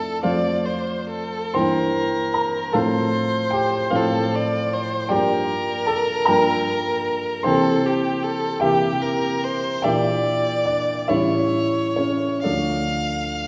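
Classical romantic duo in 6/8 with free rubato, melancholic and elegiac in mood, taken from a longer piece. A single rich, smooth bowed violin carries the melody up front with even vibrato and a polished top, while an open-toned baby grand piano supplies the accompaniment across a broad register from deep bass to high treble. Both sit in a reverberant concert hall, heard from further back in the room, and the harmony drifts through darkening seventh and diminished chords before coming to rest on D minor around 12.4 s.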